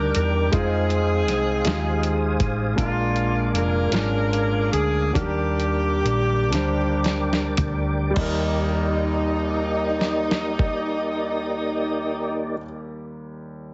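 Reverent and soulful, this slow gospel passage in 6/8 sets a distant, vibrato-laden saxophone section on the melody over a woody upright piano with audible action noise, a tonewheel organ holding chords through a slow rotary speaker with key click, a round, dark hollow-body electric bass, and a muffled, pitched-down sampler-style drum kit with a thumpy kick; the music slows from 2.8 to 8.2 seconds as a drum fill arrives at 6.5 seconds, all within a heavily compressed, radio-like sound touched by light reverb.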